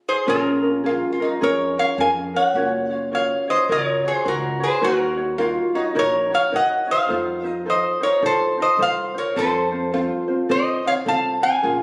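Hawaiian music in B-flat minor at 106 BPM in 4/4, with a swung eighth-note feel and a dreamy, sunny mood, cut from a longer piece. A metal-body resonator slide guitar carries the melody up front from 0.1 seconds, its bright, nasal, metallic tone shaped by slide and fingerpicks. At 0.3 seconds the oud enters with a mellow, woody second line, plectrum-plucked on its fretless double strings, alongside a light, thumb-plucked ukulele accompaniment and a dark, thumpy upright bass played pizzicato on gut strings. The chords move from Bbm7 through Gbmaj7, Ebm7 and F7 before settling on F, with all parts running through to 11.8 seconds. The sound carries a moderate recital hall reverb and compression, with the slightly roomy character of a phone recording made in the hall.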